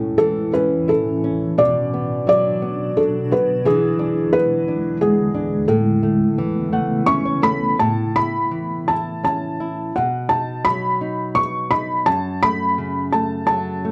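A children's lullaby in 3/4 with a loose, rubato feel, this short passage from a longer piece sounds innocent and sleepy. A felt-muted upright piano carries the melody up front, its soft, intimate tone marked by audible action noise and a short sustain. A fingerpicked nylon-string guitar accompanies throughout, dark and small in character, with finger squeak caught by the close, detailed microphones, and it adds a fill from 6.4 to 7.8 seconds. Beneath them, a granular cloud pad holds blurred, detuned chords with a slow attack and its own built-in reverb, dropping out at 7.8 seconds as the music moves into a new section. The harmony drifts from A through Bm and E7 to a softened Aadd9, then later turns toward B and F#m, all in a dry, closely captured sound.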